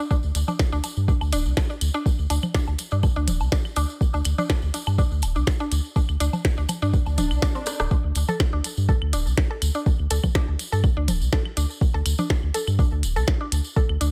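This quirky, clinical minimal techno excerpt opens with a soft, up-front electronic kick, a jingly, close tambourine, dry analog woodblock, congas and claves with digital delay, and a woody, bright, percussive FM mallet-like synth pluck riff treated with chorus, phaser, delay and sidechain pumping, soon joined by a deep, dark, round analog bass that pumps too and a tape-tinged click kit of clicky hats, rim click and tiny snare on a lightly swung groove, before a background electronic swell at 7.0 s and a drum fill at 7.7 s lead into a drop at 7.9 s, the whole mix sitting in a digital ambience.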